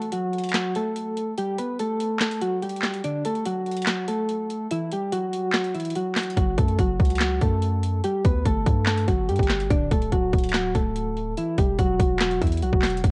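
A worn, warbling cassette-tape sound with drifting pitch and light reverb colours this dark, hard-hitting trap excerpt, cut from a longer hip hop piece and set in a half-time feel. Soft, round electric-piano-like synth keys carry the melody from the start, their mellow tone shaped by chorus, tremolo, a low-pass filter and digital delay, and they sit up front. Beside them, an electronic trap kit pushes forward with a hard-clipped kick, a sharp snare, handclaps and metallic hi-hats, all overdriven and roughened with a gritty 12-bit sampler character. The opening break gives way at 6.4 seconds, when a punchy, heavy 808-style bass enters with a fast attack, a decaying sine tone and a noise layer. Underneath, the harmony cycles through F#m, Gsus2, D and Emadd9 twice, giving the passage a brooding, looping pull.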